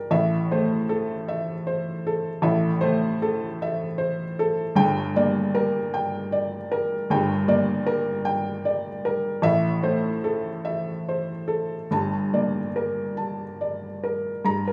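A rough home demo with a moderate studio reverb gives this short cut from a longer neoclassical minimalist piano piece a modest sense of room. A felt-muted upright piano plays solo throughout. Its tone is muted and intimate, with a short sustain and a thin felt touch, and it sits up front in the mix. At a slow, rubato 46-52 BPM in 6/8, the melancholic, reflective music moves in G dorian, tuned to A4 = 444 Hz, across a range from G1 to Bb5. The harmony turns gently between Am and Gm, moving to Gm at 4.8 s, back to Am at 9.4 s, and settling on a Gmadd9 at 11.9 s to close the passage.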